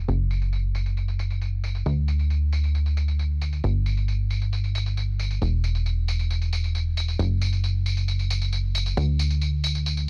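Driving and emotional, this uplifting trance fragment, cut from a longer piece, runs in a straight 4/4 with a plucky analog bass sitting up front, its punchy, funky sawtooth and square-wave tones shaped by ring modulation, a fast-attack filter pluck and tube saturation as it moves between E1 and D2. An electronic, layered tambourine joins at 0.1 seconds, overdriven and sitting well behind the bass, with low-pass filtering on its hats, percussion, snare and cymbals. The sound is dry and dense, with a heavily limited modern master.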